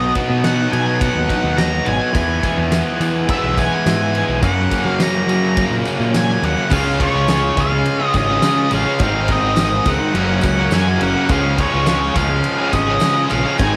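A swaggering, sunny classic rock passage at 105 BPM opens with a dark, fuzzy octave lead guitar carrying the melody over an up-front, bright, tightly distorted riff guitar, a background hollow-body semi-hollow guitar pulsing with harmonic tremolo, and a growling overdriven fingered bass. A huge arena drum kit joins at 0.2 seconds from the back of a big room, with a fat snare, punchy kick and crash and ride cymbals, and a jingly tambourine sits very quietly beneath it from 2.1 seconds. At 6.7 seconds the music settles into Db major and a double-tracked, compressed overdriven electric guitar adds a further background riff, all within light reverb and small room ambience.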